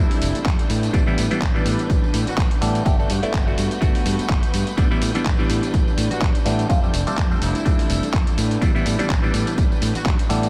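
Joyful and funky, this filtered disco house cut moves with a light swing on the sixteenths and cycles through F69, A9sus4 and Gmaj7 chords. A punchy electronic kick, overdriven and re-recorded in a large room, sits up front from 0.5 seconds, while a gritty, compressed sampler-style soul kit adds handclaps, hi-hat and tambourine, its hats, percussion and cymbals pumping against the sidechain. Underneath, a growly fuzz fingered electric bass, overdriven with tube saturation, pumps and sits under a low-pass filter. A percussive, stringy clav through a combo amp carries the accompaniment with phaser, pumping and filtering, and a focused, distant violin section holds bowed chords with vibrato in the background, also pumping through the filter. A bright, very quiet horn section carries the melody in two passages, the second arriving at 6.1 seconds, all set in light reverb.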